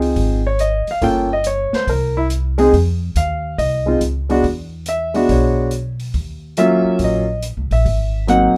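An up-front baby grand piano carries the melody in this playful jazz piano trio excerpt, its natural tone ranging from Gb3 up to G5. The tempo is a brisk 140 BPM in 4/4 with a swung eighth-note feel, and the instruments are tuned slightly low, to A4 = 435 Hz. A plucked upright bass with steel strings sits up front as well, woody and warm in its low register. An acoustic drum kit of hi-hat, snare and kick sits lower in the mix, dark and smooth, with a medium-tuned snare and a boomy kick, and it stops at 8.4 s, just before the other two parts end at 8.6 s. The harmony moves from Dbmaj7 through Gm7b5 and E9 to Ebm7 and Ab7, all in a moderate club reverb that lends the trio a cozy, intimate glow.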